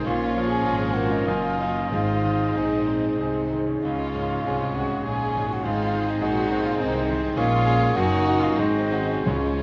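Set in a wet scoring-stage reverb, this passionate, lyrical classical excerpt in 3/4 moves with a rubato feel, led by a bright, brilliant grand piano up front with long sustain, while a warm violin section with portamento shares the melody from the background. A pure, hollow flute, a mellow clarinet, a smooth-topped oboe and a second, focused violin section carry supporting lines, over a dark bassoon and an expressive viola section in accompaniment and a distant, very quiet French horn section holding sustained chords. A very quiet cello section and a lush, close double bass section anchor the bass, and articulate, close and dry timpani with hard mallets sound briefly from 1.9 s and again at 9.3 s.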